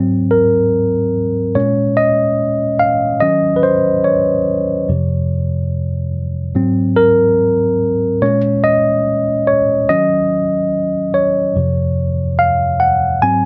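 R&B in Db major at a relaxed 72 BPM, this excerpt from a longer piece carries a soulful, unhurried mood with a light swing on the sixteenths. A lone tine electric piano plays throughout, spanning F2 to Ab5 and holding the whole performance from the opening until about 13.5 seconds. Its tone is worn and slightly out of tune, yet clean and direct, sitting up front in the mix. The harmony cycles twice through Ab9, Bbm7, Ebm7 and Dbmaj7/F, giving the passage a gentle, looping pull. A wet studio ambience with a short decay surrounds the instrument, lending the intimate sound a touch of space.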